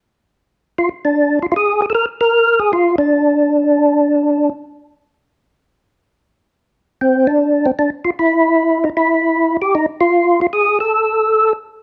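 Jazz with a bluesy, soulful mood swings at 154 BPM in 4/4 as a solo percussive tonewheel organ, fat and lightly overdriven with third-harmonic percussion, key click, chorus vibrato and a slow rotary speaker, sits up front between C4 and Bb4, playing from 0.8 to 4.5 seconds and again from 7.0 to 11.5 seconds in a dark production with light reverb, cut from a longer piece.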